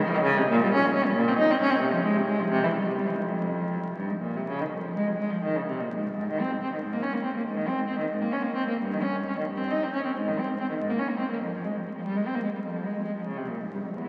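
A lone bowed cello opens the excerpt, playing up front with a soft attack, expressive vibrato and gliding portamento. This is a short excerpt from a longer baroque-style suite movement for unaccompanied cello, set in a lilting 12/8 with a rubato feel that gives it a flowing, introspective mood. At 6.1 seconds the harmony shifts from minor to its relative major, lending the line a brighter cast as the single player continues through to 14.1 seconds. A long, wet cathedral reverb surrounds the instrument, and the sound carries the vinyl crackle of a very old 78 rpm record, giving it an aged patina.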